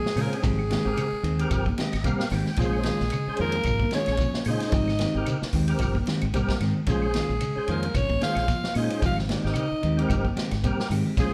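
A swung sixteenth-note afrobeat groove at 112 BPM drives this defiant, intense fragment, where a raspy, gritty alto saxophone carries the melody over a veiled, bucket-muted trombone second line, clean picked guitar arpeggios, hollow-body guitar stabs with a warbly pitch drift, a fat, key-clicking tonewheel organ through a slow rotary speaker with chorus vibrato that adds a fill at 1.5 seconds, a round, punchy dub bass, a dark vintage drum kit, and quiet woody claves, ringing high-tuned congas and grainy shekere, all moving between Abmaj7 and Bbm7 in a wet live-room reverb.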